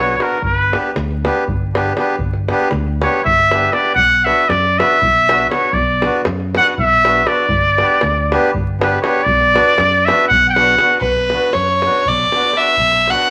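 In a 7/8 at 238 BPM counted in eighths, this restless, fiery Balkan wedding-band fragment in B minor opens with a bright, nasal muted trumpet solo up front over reedy, dry-tuned accordion, a growly amped fingered electric bass and a tight, close davul, moving through G and B minor before a biting, earthy violin with light vibrato takes the melody at 11.0 seconds, all set in a moderate large studio reverb with vinyl crackle.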